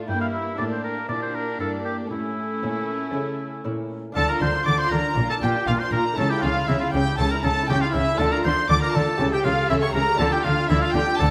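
Driving and dramatic, this baroque-style concerto movement in D minor moves at 119 BPM in a straight 4/4, heard here as a short portion cut from a longer piece. A clear, up-front solo oboe with vibrato carries the melody from 0.1 seconds, alongside a rich gut-string violin section playing the tune with light vibrato and a smooth top, while a second violin section sits in the background on its own line. A dark, distant viola section and a delicate, fingerpicked lute with doubled gut strings fill in the accompaniment, the lute sitting in the background. A close, reedy cello section anchors the bass from the start, and a double bass section joins it at 4.2 seconds as the music turns from a tense opening on Em7b5/G and A toward a D minor progression through Bb and A/C#. The period-style string sections and oboe sit in a recital hall with a generous, wet reverb that gives the ensemble a resonant, chamber-like depth.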